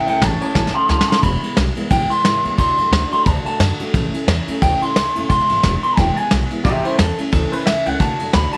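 A twangy, slightly broken-up electric guitar with tape echo leads from the first moment over a bright, full-bodied picked acoustic guitar, joined by a woody, growly pizzicato upright bass and a dark, smooth brush drum kit with a fill near 0.6 seconds, giving this short, rollicking, upbeat rockabilly excerpt its swung drive in a small room before the electric guitar takes a clean solo at 6.7 seconds.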